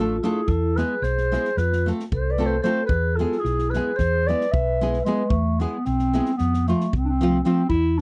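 Fiery and virtuosic, this short Balkan wedding-band clip in 9/8 at 224 BPM in E phrygian dominant sets a dark, soft-attacked clarinet melody up front over a fingerpicked nylon-string guitar, a round, punchy hollow-body electric bass and a natural drum kit of kick and snare, while a ringing vibraphone with medium motor vibrato adds a second line until 5.3 seconds, all captured as a dry, close 1970s-style studio recording.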